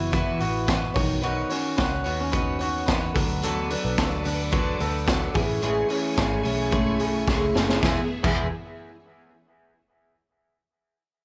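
A shimmering, octave-doubled twelve-string acoustic guitar opens this breezy, bright jangly indie pop excerpt in E major at 109 BPM alongside twangy, slightly broken-up electric guitar arpeggios soaked in tape echo and plate reverb, a dark, round foam-muted bass and an up-front, gritty garage drum kit with a boomy kick. The chords move from Esus2 through Badd9 to D6, and at 3.4 seconds mellow sawtooth string-machine violas with phaser and ensemble chorus swell in softly from the background before the harmony shifts to Amaj7. A drum fill at 7.3 seconds then leads into a new section landing on E.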